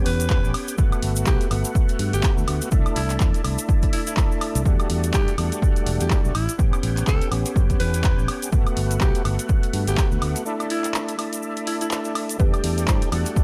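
A dry, close-sounding mix opens this smooth, deep house excerpt at 124 BPM in 4/4, with a swung sixteenth feel and a punchy, tape-warm electronic kick sitting up front. A fingered electric bass and a gritty, overdriven tonewheel organ playing stabs both pump against the kick, the organ thickened by chorus vibrato, a slow rotary speaker and dub echo, over chords moving from A9 through Gmaj9, C69 and Em11. A growling alto saxophone carries the melody in a breathy, raspy jazz style with light vibrato and tape echo, while an analog drum machine supplies handclaps, hi-hat, ride cymbal and woodblock, and a grainy tube shaker sits in the background. A break arrives at 10.5 seconds on an Asus4 chord, and at 12.4 seconds a woody, round mallet-like synth pluck with chorus, phaser and tape echo appears alongside a barely audible, shimmering string machine of violins as the harmony settles on Em11.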